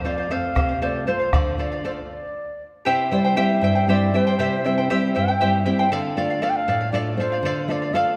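Bright, shimmering double-string charango and full-bodied fingerpicked nylon-string guitar open this wistful, melancholic Andean folk excerpt in 6/8, soon joined by a pure, distant large quena carrying the melody and a round bombo that plays only from 0.6 to 2.0 seconds, before a brief stop at 2.1 seconds gives way to the repeated phrase, all set in a wet scoring-stage reverb.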